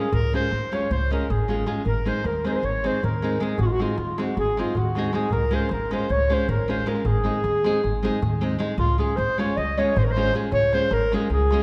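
A mellow, soft-attack clarinet leads this exuberant, virtuosic Balkan wedding-band fragment in a brisk 9/8 at 312 BPM (eighths), joined by a reedy, close-miked accordion second line, with a dark, fingerpicked nylon-string guitar carrying audible finger squeak, a woody pizzicato upright bass and a clay-shell darbuka played with soft hands, all moving between Db and Ab in a wet scoring-stage reverb before a new section arrives at 8.8 seconds.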